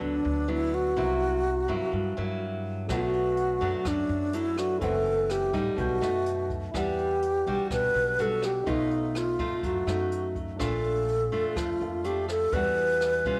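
Sunny and romantic, this bossa nova excerpt moves at 125 BPM in a straight 4/4, cut from a longer piece. A breathy, close-miked alto flute with a wooden head carries the melody up front, its soft attack and slightly unsteady vibrato giving the line an intimate, human quality. Beneath it, a fingerpicked nylon-string guitar with fresh strings supplies classical-toned accompaniment, while a pizzicato upright bass adds a woody low end. At 2.9 seconds a dark, mellow grand piano joins in the background, along with a brushed jazz kit playing hi-hat, rim clicks and a boomy kick in a natural studio room. The harmony drifts through rich jazz colours, from a rootless Gmaj7 and C7#11 to Em9 and a Bbmaj7, before settling back on Em9, all framed by a moderate plate reverb.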